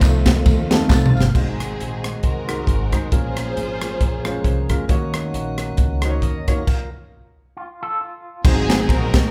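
A swung 4/4 groove at 135 BPM drives this soulful, fervent stretch of uptempo gospel, anchored by a crisp fusion drum kit up front with a punchy kick, high-tuned snare and dark cymbals, while woody pizzicato upright bass, a natural-sounding baby grand piano with short sustain and a round, clean tonewheel organ through a fast rotary speaker sit beneath. A lush bowed string section carries the melody with expressive vibrato, close, dry handclaps and tambourine add accents in the opening second, and a breathy, hollow flute ensemble holds soft chords in the background from 1.3 seconds. After the band stops at 6.7 seconds, a bright, twangy electric guitar with an envelope filter and tremolo plays a brief line, all heard as one live room with light reverb.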